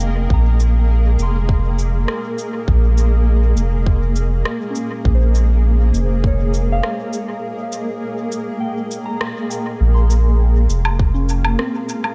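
A round, deep analog bass sits up front in this hazy, spacious ambient dub piece at 101 BPM in Bb minor, under a cloudy, detuned granular pad with built-in reverb, a soft FM bell playing arpeggios in the background through chorus, phaser and dub echo, an electronic shaker, rim click and woodblock sent into dub echo, and a tight, tape-tinged electronic kick that drops out at 6.4 seconds through a break from 7.4 seconds, with a band accent at 9.2 seconds, before it returns briefly at 11.0 seconds.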